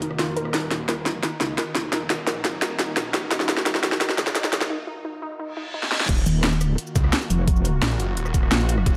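Overdriven, up-front drums lead this aggressive, shadowy slice of technical drum and bass, with a cracking snare, bright hats, rim clicks, shaker and crash cymbal, plus fills, all re-recorded in a small room. Beneath them, a snarling distorted saw bass growls through a moving notch and tube saturation, while a swarming granular drone holds tense sustained chords in the background, pumping from the sidechain as a filter sweeps it through the build-up. A dusty, lo-fi pluck warbles through chorus-soaked arpeggios with digital delay until 6.0 seconds, and a very quiet, nostalgic tape-like pad and a faint riser with reverse cymbal add haze leading into a brief break. At 6.1 seconds the drop lands as a knocking electronic kick arrives, followed at 6.3 seconds by a metallic, saturated FM wobble bass that sits mellow under its chorus. The production is dark and warm, set in a moderate digital room reverb with a high-pass filter.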